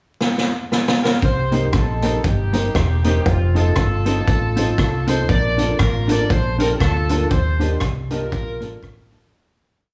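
A swung ska beat at 118 BPM in Bb major bounces along cheerfully as a gritty, punchy garage drum kit opens with a fill at 0.2 seconds, a round, hollow-body bass walks with chromatic approach notes through Cm7, F7 and Bbmaj7, a mellow guitar and a woody upright piano chop the off-beats with slapback echo, and a smooth horn section with light vibrato plays call phrases partly doubled in thirds, all over vinyl crackle and small-room ambience before a fade-out from 7.3 seconds.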